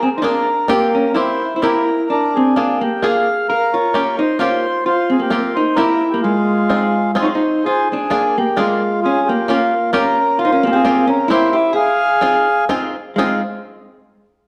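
A dark, warm production set in a reverberant recital hall gives this nostalgic, whirling musette fragment in F minor a soft glow as it swings along at 131 BPM in 3/4 with a rubato feel. A reedy, boxy accordion carries the melody up front, while a clean, compressed hollow-body electric jazz guitar with analog delay plays a dark second line and a bright, twangy banjo, played with fingerpicks, adds percussive accompaniment; all three play throughout. The harmony circles through Bb7, Gm7b5, C7 and Fm7, and the passage turns to a new section at 7.6 seconds.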